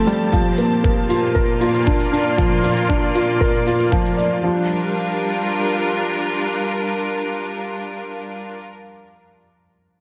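Melancholic and cinematic, this short cut from a longer piano-and-strings electronica piece moves at 117 BPM in a straight 4/4, set in G minor and tuned to A4 = 442 Hz. A felt-muted upright piano sits up front with a soft, mellow, intimate riff, its short sustain and audible action noise carried through a digital delay for the full 10 seconds. Beside it, a clear symphonic string section holds sustained, bowed chords with light vibrato and a smooth top, its intensity breathing under sidechain pumping until 8.7 s. A compressed, pitched-down electronic kick drum adds a muffled, thumpy, tape-tinged pulse, while a brushed acoustic shaker stays in the background under low-pass filtering, both dropping out near 4 seconds. The harmony moves from Bb to Gm7 as the second section begins at 4.4 s, and a moderate echo-chamber reverb gives the whole a spacious, filmic depth.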